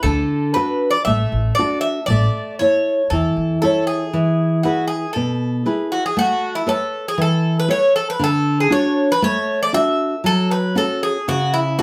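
A wet studio ambience surrounds this hopeful, relaxed Greek folk excerpt, played live by a bouzouki band at 118 BPM in A major, where a picked bouzouki carries the melody up front with bright, metallic double strings, a nylon-string guitar supplies deep classical fingerpicked accompaniment throughout, and a woody, dark pizzicato upright bass stops at 3.5 s.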